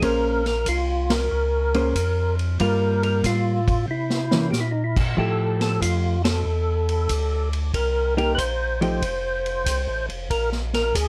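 A percussive tonewheel organ carries the melody in this soulful, bluesy soul jazz organ trio excerpt, its fat, clean tone marked by third-harmonic percussion, key click, chorus vibrato and a slow rotary speaker, sitting up front. Beneath it, a second tonewheel organ plays the bass line with a piping, scooped sound, also through a slow rotary speaker. A dark, clean hollow-body electric guitar adds picked, compressed accompaniment until 9.0 seconds. A vintage acoustic drum kit with a natural studio-room sound, dark cymbals, a medium-tuned snare, a tight kick and a warm, rolled-off top keeps a swung 4/4 at 93 BPM, with a fill around 3.9 seconds and band accents near 1.0 and 6.1 seconds. The harmony in F major moves through rich chords such as Bbm9, C7b9 and Fmaj9, all set in a light reverb.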